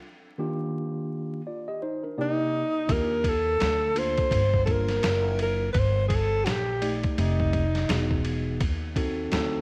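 A breathy alto saxophone carries the melody in this nocturnal, mellow jazz-hop excerpt, close-miked and up front, its subtone and vibrato giving the jazz-style solo an intimate feel. A mellow tine electric piano opens the piece at 0.4 seconds with clean, direct chords over an Ebmaj9 and Cm9, and the saxophone joins at 2.2 seconds during this opening break. At 2.9 seconds the groove arrives at a relaxed 84 BPM in 4/4 with a lazy swing on the sixteenths: a woody, growly pizzicato upright bass and a sampler-style drum kit that sounds compressed, pitched down and muffled, with a thumpy kick, a medium-tuned snare, hi-hat and ride, all carrying the character of a large room. The harmony drifts through Ebmaj7, Gm7 and F13 before a brief Emaj7 and D#dim7 near the end. Light small-room reverb and a layer of vinyl crackle wrap the mix in a soft, late-night haze.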